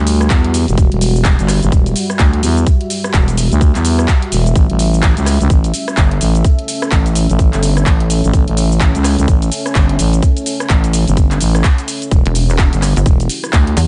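A dry, close mix with a dulled top end carries this bouncy, swaggering bass house cut at 127 BPM, swung on the sixteenths, where a tight, up-front electronic kick sits under an overdriven house kit of handclaps, hi-hat, rim click and shaker re-recorded in a large room. A thick, growling FM bass with overdrive and sidechain pumping drives the low end, while a deep, moody sawtooth pad with chorus, its own reverb and vintage 12-bit sampler grit sustains dark chords moving from Emadd9 to A and back. At 12.3 s a heavy, saturated pluck wobble bass with chorus joins, pulsing and mellow yet up front, just before the excerpt ends.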